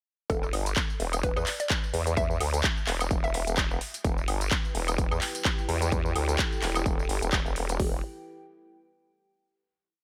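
A nasal, saturated wobble bass sits up front in this swaggering, gritty bass house piece, its formant filter sweeping vowel-like shapes through modulated phrases with changing wobble speed while sidechain pumping makes it breathe. Two overdriven electronic kits drive the drop from 0.3 s. One supplies a punchy four-on-the-floor kick and open hats, and the other adds programmed metallic hats, a clap backbeat, tambourine and woodblock, all with a swung sixteenth feel. In the background, a hollow, bouncy square-wave pluck with chorus and tape echo plays short phrases until 3.4 s. A deep, moody analog pad enters at 4.7 s, its slow-attack chords roughened by 12-bit sampler grit and pumping with the bass, before the piece settles on a closing chord. The mix is dry and close, with little reverb.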